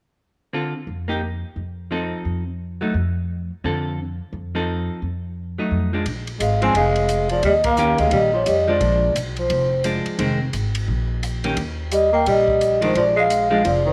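A mellow, ringing vibraphone played with soft mallets carries the melody in this warm, swinging small-group jazz excerpt at 174 BPM in Bb mixolydian, arriving at 6.4 seconds alongside a growling, breathy tenor saxophone with vibrato and scooped notes on a second line; the pair pause briefly and then return to close the passage. Underneath, a dark, clean hollow-body electric guitar accompanies from the start and a woody pizzicato upright bass sits up front in the low end, while a dry compact cocktail kit with dark cymbals and a punchy kick enters at 6.1 seconds, just before a band accent at 7.6 seconds. A moderate echo-chamber reverb gives the sound a sense of depth.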